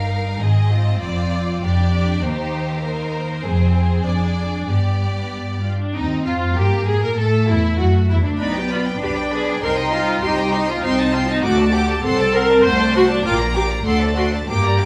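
Heard through a moderate large reverb over small-room ambience, this dramatic, restless passage from a quick classical-period movement for string orchestra sets a clear, intense first violin melody above an expressive, close second violin line, smooth, even violas, rich cellos and focused, up-front double basses, all bowed with vibrato.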